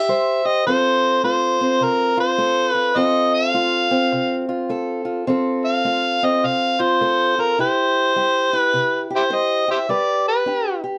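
Acoustic country blues at 104 BPM with a swung, swaggering and soulful feel, this brief excerpt pairs an overdriven, gritty amplified harmonica carrying the melody with light vibrato, tongue slaps and scooped notes in a jazz-inflected solo, over a dark, boxy fingerpicked archtop guitar whose finger squeaks come through as it moves from C to F and back before landing on G at 9.9 seconds, both up front in a moderate studio ambience.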